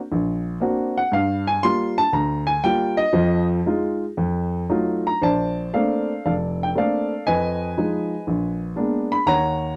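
Swinging loosely in 4/4 with a rubato ease, this relaxed, playful solo jazz excerpt features a dark, mellow baby grand piano placed up front across a span from F1 to C6, moving through rich chords such as Daug7, Gm7, F7b9 and Bbmaj9 before closing on Bb7b9 at 8.3 seconds, all captured with a natural tone, light reverb and the dry, close feel of a 1970s-style studio.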